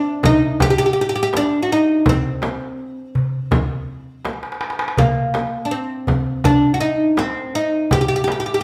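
Melancholic and soulful, this short excerpt from a longer Arabic maqam ensemble piece moves at 82 BPM in a straight 4/4, centred on C minor. The oud carries the melody between Bb3 and G4, its fretless, plectrum-plucked double strings sounding woody and deep, placed up front. A metal-shell darbuka adds crisp percussion with a live-room character, while a large frame drum, close and dry and played with hard hands, sits up front with a deep tone. A drum fill from 4.3 to 5.0 seconds marks the move into a new section, which carries the trio through to the close at 8.6 seconds. The band plays together in one room, bathed in a generous large-studio reverb that lends the ensemble an open, resonant space.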